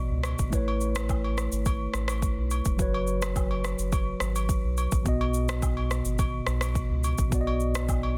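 A dry, dense and heavily limited mix frames this sunny, romantic afrobeats excerpt in B mixolydian, moving at 106 BPM in a straight 4/4 over a B, Aadd9, F#sus4 and back to B progression. A mellow, clean tine electric piano sits up front with the accompaniment, while a round, dark analog bass with a filtered pluck and sustained tail anchors the low end. An electronic afro-pop drum kit enters at 0.2 seconds with a deep kick, rim click, shaker and a softly clipped snare, together with quieter acoustic agogo bells and woodblock that carry a small-room character.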